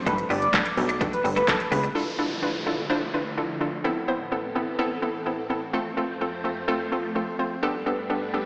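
Energetic and confident, this dance-pop excerpt runs at 127 BPM in a straight 4/4 and opens on a drop that lasts until 2.0 seconds. In that opening stretch a deep house drum kit hits up front with a punchy kick, smooth hats, handclaps and shaker, joined by a funky, sawtooth-edged analog bass, a thick, nasal unison lead with vibrato and dub echo, and a bright, twangy twelve-string electric guitar riff sitting in the background. Beneath it all a vintage string machine of violas holds slow-attack chords with phaser and ensemble chorus, while a hollow, bouncy square-wave pluck carries the accompaniment with chorus, both breathing with sidechain pumping. At 2.0 seconds the drums, bass, lead and guitar fall away, leaving the strings and pluck over a downlifter and swell as the harmony moves from Gadd9 through Dmadd9, Amadd9 and F before returning to Gadd9. The whole mix sits in a lush hall reverb and has the character of a big sound system in a bare stone room heard through a small speaker.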